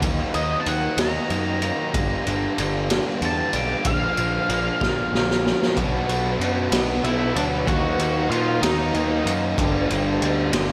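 Quiet-loud alternative rock in a slow 6/8 at 63 BPM, dark and angsty, this short clip pits a dark octave-fuzz lead guitar solo against crunchy and thick fuzz rhythm guitars with slapback echo, a punchy overdriven fuzz bass, and an up-front, boomy, gritty garage drum kit of kick, snare and ride that plays a fill from 4.8 to 5.8 seconds, when a very quiet double-tracked biting guitar joins at 5.7 seconds, all set in a lush hall reverb for a big arena sound over chords moving from D#m through Gm, A# and Bm.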